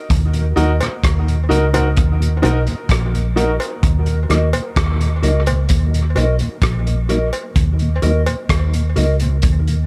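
Dub reggae with a deep, heavy mood, taken from a longer piece and built on a single minor chord in a straight four-beat groove. A vintage muted fingered electric bass sits up front, round, foam-muted and punchy, with a crunchy breakbeat drum kit of hi-hat, kick drum and rim click that sounds saturated and gritty, its top rolled off and its kick punchy in a small room. A mellow tonewheel organ hangs in the background with chorus vibrato, a slow rotary speaker and dub echo, while a dark, clean, compressed electric guitar adds tremolo and dub echo higher up. A concert grand piano with an open, deep-bass character plays echoing stabs only between 0.6 and 3.7 seconds, and a close, dry cowbell taps through the background with its own dub echo. The echo-heavy mix carries a small room ambience, and one part drops out from 7.6 seconds to the end.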